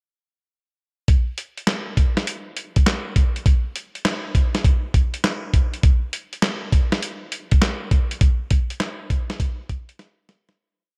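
A gritty, compressed soul sampler-style drum kit sits up front with a thumpy kick, medium-tuned snare layered with handclaps, and hi-hat in a hard-swung drum-machine beat at 101 BPM, giving this slick, bouncy R&B piece its dusty, tape-warm character under light reverb before a fade-out from 8.2 seconds and a closing drum fill at 10.0 seconds.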